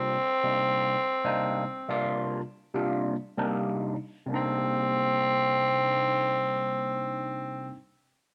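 A raspy tenor saxophone carries the melody around C4, up front, over the barky, overdriven tine electric piano, played through a combo amp with phaser, which opens on a Cm9 chord; the two together set a mournful, smoky slow blues in C minor with a gentle swing at 64-77 BPM that slows down over the first 4.3 seconds, with the gritty, vintage-toned saxophone and the bright keys sitting in a moderate studio reverb before the clip, cut from a longer piece, breaks off at 7.8 seconds.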